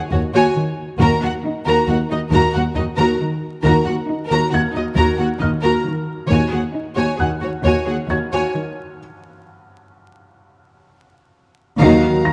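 Ominous and eerie, this suspense film cue moves at a slow 67 BPM in 3/4 with uneven beats, set in Eb minor over a Dbsus4/Eb chord. A felt-muted upright piano supplies soft, mellow texture high in its range, its audible action noise adding intimacy, while two violin sections carry the melody and a second line with pure, floating sul tasto tone. Beneath them, a dark viola section holds a single accompanying note with light vibrato, a background chamber cello section plays a riff, and a rich cello section joins a double bass section on a low Eb2 bass. Hard-mallet timpani strike briefly between 1.0 and 2.3 seconds, articulate and dry in the background, and a break from 9.0 seconds leads to a band accent at 11.8 seconds, where a distant, roomy French horn section enters with dark sustained chords. The recording sits in a moderate concert hall reverb, and a layer of vinyl crackle lends the passage an aged, unsettling grain.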